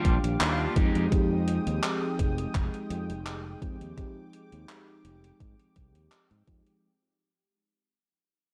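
A swung sixteenth-note groove at 84 BPM in 4/4 sets this brief, woozy vaporwave fragment in motion, cut from a longer piece and fading out across its 6.8 seconds. A thumpy, overdriven electronic kick sits up front, joined by a gated 80s drum machine of handclaps and hi-hat soaked in gated reverb, both re-recorded in a large room. Beneath them, an overdriven fingered electric bass gives a growly, bright foundation in F dorian, while an FM electric piano with a soft pad layer plays mellow, dreamy accompaniment through analog chorus and delay. A thick, airy unison pad of detuned sawtooth and square waves holds sustained chords above, moving from Ebmaj9 to Fm9 at 0.8 seconds. A twangy electric guitar, picked at the edge of break-up with lush chorus and analog delay, offers a short riff that stops at 1.1 seconds. Light reverb and a cassette-tape sheen lend the whole fragment its nostalgic haze.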